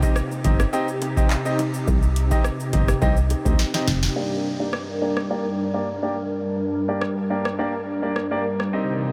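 A punchy, round FM bass anchors this bouncy, sultry dancehall excerpt from 0.4 to 4.1 seconds, beneath a booming analog drum machine with a deep kick, crisp snare, metallic hats, handclaps, rim click and shaker, plus barely audible tight, high-tuned bongos. A clear, intimate concert grand piano with audible action noise plays the accompaniment, while a hollow, flute-like pad with a warbling vintage chorus holds sustained chords that pump against the beat, moving from Cm to Gm. A drum fill closes the first half, a filter sweep runs through the second from 4.2 seconds, and a faint riser appears at the end, all soaked in a huge, dreamy reverb.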